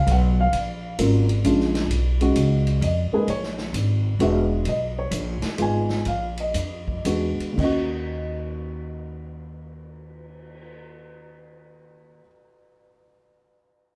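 Swinging and late-night, this jazz piano trio excerpt in Eb minor moves in a swung 3/4 at 111-131 BPM, with a dark, mellow upright piano of short sustain carrying the melody up front through a plate reverb, a growly pizzicato upright bass on steel strings holding down the low end, and a distant, roomy big-band drum kit with a punchy kick, rolled-off top, ride, hi-hat, snare, crash and a cymbal swell sitting further back, all in a wet studio room, as the tempo slows between 4.6 and 7.6 seconds and the trio settles on an Ebm7 at 7.6 seconds before the drums drop out at 10.7 seconds.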